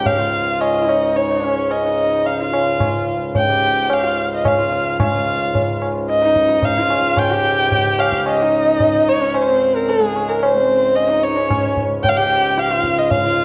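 A dark, bowed violin leads this meditative, radiant Hindustani piece in raga yaman on Db. It sits up front with vibrato, portamento and a sul tasto tone that keeps its top smooth. Beneath it, a single sarangi carries a lower second line from a distance, with light vibrato, gliding portamento and the shimmer of sympathetic strings giving it a woody glow. A close-miked pedal harmonium holds a dry, full, reedy drone that seems to breathe, while a high-tuned tabla rings out close and acoustic in a straight 4/4 feel. The tempo starts at 110 BPM and pushes faster, and the music moves into a new section at 5.0 seconds. A wet recital hall reverb surrounds the ensemble in this brief passage cut from a longer performance.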